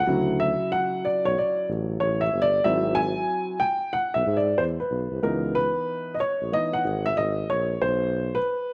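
A dark, woody upright piano leads this nocturnal, smoky jazz-hop excerpt, its intimate, vintage tone carrying audible action noise as it solos across the full 8.7 seconds over chords moving from Dmaj7 and G#7alt to C#m9 and B5 in C# dorian. Beneath it, a mellow tuba supplies the bass line with light vibrato and scooped notes, sounding distant and roomy. The 93 BPM groove swings its sixteenths, and an echo chamber reverb blended with a small room gives the pair a hazy, late-night space.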